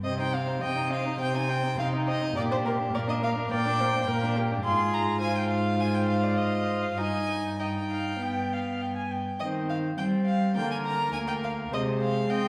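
A rubato 4/4 pulse at 103 BPM drives this restless, stormy C minor fragment of a quick classical-period string quartet movement, where a gut-string first violin carries the melody up front in the high register, a dark, nasal second violin traces a second line, a viola with light vibrato fills the accompaniment, and a reedy cello anchors the bass, all four period-style players bowing throughout a harmony that moves from Cm through Fm9/G and G before settling toward Ab/C, heard from further back in a wet recital hall.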